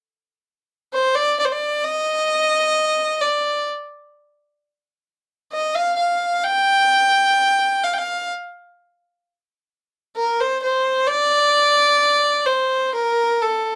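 Longing and hypnotic, this fragment of an Arabic piece in free time features a single bowed violin, entering at 0.9 s and playing solo in D maqam kurd with a nasal, earthy tone and light vibrato, ranging from A4 to G5, tuned to A4 = 441 Hz and captured up front by close, detailed microphones in a dry room.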